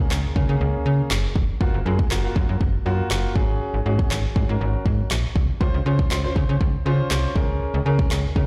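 Dance-pop at 120 BPM in 4/4 with a straight feel, this upbeat, euphoric clip in Db major is cut from a longer piece and tuned to A4 = 443 Hz. A concert grand piano with a warm, open tone and deep low end plays accompaniment from 0.0 seconds, sitting between Bb3 and C5 and pumping under sidechain compression. A snappy, slap-like FM bass joins at 0.1 seconds, up front with a fast, metallic, digital attack and a decaying tail, ranging from F1 to Db3 and also pumping with the sidechain. The deep house drum kit enters at the same moment, layered and produced, with a deep kick, a woody snare and handclaps placed up front. The harmony moves through Bbm7/Db, Gbmaj7, Ab7sus4 and Dbmaj7 before returning to Bbm7/Db, all set in a digital ambience that sounds like a big sound system in a bare room with large studio reverb.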